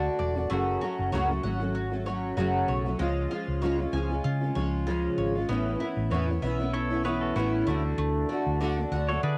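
This easy-going, heartfelt acoustic pop fragment, cut from a longer piece, opens with a fingerpicked steel-string dreadnought guitar set up front, its full-bodied tone double-tracked and coloured by cassette tape. From the first moment, a bowl-back mandolin adds picked arpeggios with the shimmer of its double strings, sitting quieter in the mix and also carrying a tape tint. Beneath them, a hollow-body short-scale electric bass, played with the fingers, gives a dark, round and punchy foundation, amped and placed up front. At 6.7 s a pedal steel guitar enters with a clean, compressed second line, played with fingerpicks and slide and shaped by volume swells. The music moves at 96 BPM in A major with a light sixteenth-note swing, passing through D, F#m, C# and Aadd9 in a small, lightly reverberant booth that gives it the intimate feel of a home cassette recording.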